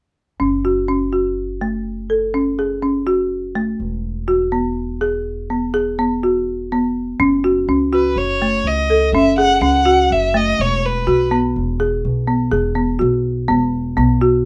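A straight 7/4 pulse drives this contemporary instrumental passage, cut from a longer piece, giving it an urgent yet pensive mood. A folk marimba struck with hard mallets carries the arpeggios from start to finish, its hardwood bars sounding dry, rustic and dark and sitting up front. Beneath it, a pizzicato upright bass with gut strings adds a thumpy, woody low end, moving between F#m and Eadd9. At 7.9 seconds a single bowed violin takes the melody until 11.3 seconds, rich and expressive with vibrato, soft attacks and portamento, placed up front alongside the marimba. Light reverb gives the performance a modest sense of space.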